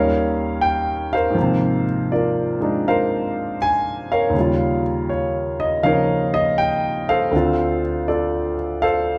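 Smoky and swinging, this short solo jazz excerpt moves at an unhurried 80 BPM in 4/4 with a lilting swung eighth-note feel. A concert grand piano carries everything alone, its intimate, up-front tone revealing deep bass and audible action noise as it moves through Eb7, Ab69, Eb9 and Dm7 across a range from D2 to Ab5. The instrument sits in a large studio with a lush reverb that lends the room a natural, live-in-one-space sound.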